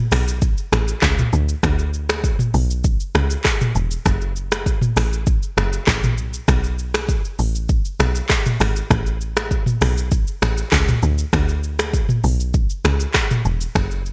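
A woody, punchy log drum bass and an electronic afro-pop drum kit enter together at 0.1 seconds, setting up a sultry, hypnotic afrobeats groove at 99 BPM in a straight 4/4. The log drum bass sits up front, its fast attack and decaying, mellow tone carrying an FM character with a noise layer, moving between E1 and D2. The drum kit is also up front, blending a deep kick, smooth hi-hats, finger snaps, handclaps, rim clicks, shaker and toms, coloured by tape-like warmth, vintage 12-bit sampler grit and gated reverb. Light reverb and a digital ambience frame the bright, 1980s-style digital production. This short excerpt of a longer piece stays in a single section, with both parts playing through to 14.1 seconds.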